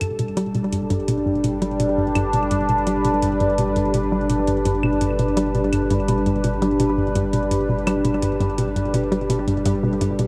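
Ambient, sequencer-driven space music with an expansive, luminous mood, cut from a longer piece, where an up-front sweeping resonant pad holds sustained chords with chorus, phaser and shimmer reverb over a hollow, bouncy square pluck riff with delay, a round sine sub bass, metallic electronic hi-hat and claves, and a very quiet pulsing gated texture, all set in a vast, echoing space.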